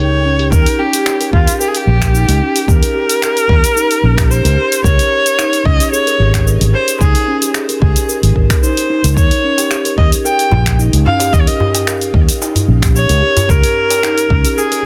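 Dry and densely limited, this excerpt of peaceful, earthy organic downtempo moves at 111 BPM in Eb mixolydian, as a clear, bowed kamancheh with vibrato and portamento carries the up-front melody through digital delay over soft-malleted, ringing steel tongue drum arpeggios and a dark, round fretless electric bass pumping under sidechain. A faint, twinkling granular shimmer opens the first half-second before a deep house kit of filtered cabasa, finger snaps and hi-hat settles in at 0.4 seconds, joined by a layered electronic kick at 0.5 seconds. A crisp, metal-shelled darbuka played with hard hands joins at 9.6 seconds, adding acoustic grit as the chords sway between Db and Eb.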